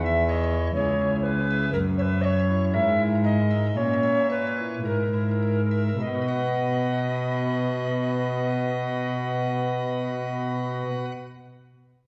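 Baroque-style classical sonata movement in B major and 4/4, radiant and serene, moving at a slow 51-64 BPM and slowing over its first 6.0 seconds as the harmony passes from C#m/E to F#7 before settling on B at 6.0 seconds. A mellow, airy alto recorder carries the expressive melody with vibrato and a tongued chiff, while a chamber organ on a nasal cornet solo stop supplies the accompaniment and a single bowed cello, rich with reedy gut-string tone in period style, holds the bass. A wet recital hall reverb places the small ensemble further back in the room, and this short excerpt is cut from a longer piece.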